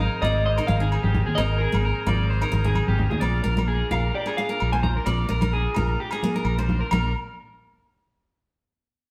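A live band fills a wet stone room in this sunny, joyful highlife guitar snippet, with a round, punchy fingered electric bass up front and a clean, hollow-toned semi-hollow electric guitar carrying the melody until 6.4 seconds. Around them, a woody steel-string acoustic guitar with old strings picks the accompaniment, a twangy, slightly broken-up electric guitar plays arpeggios through spring reverb, and a vintage, buzzy combo organ holds sustained chords with light vibrato in the background. Ringing, close agogo bells and soft-handed, thick-skinned congas join at 0.2 seconds, and the harmony shifts from Abadd9 to Bb at 3.2 seconds.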